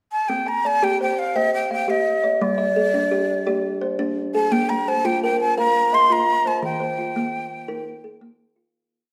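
A breathy jazz flute carries the melody up front, its metal tone soft in attack with lifted highs and an expressive vibrato, spinning short motif-based call phrases from 0.1 seconds. Beneath it, a kalimba rings out an interlocking ostinato of arpeggios from 0.3 seconds, its thumbnail pluck giving a woody, hollow-box sound with a vintage, band-limited character. This is a complete short piece in a southern African traditional style, built on an mbira-style interlocking cycle in 12/8 at 114 BPM with a straight feel and an equiheptatonic scale centred on C. The mood is hypnotic and rippling as the harmony moves through Cm, G5, Bb5 and Eb after a brief pickup. The recital hall reverb is wet, and the whole piece fades out from 6.6 seconds, with the kalimba ringing on to 8.9 seconds.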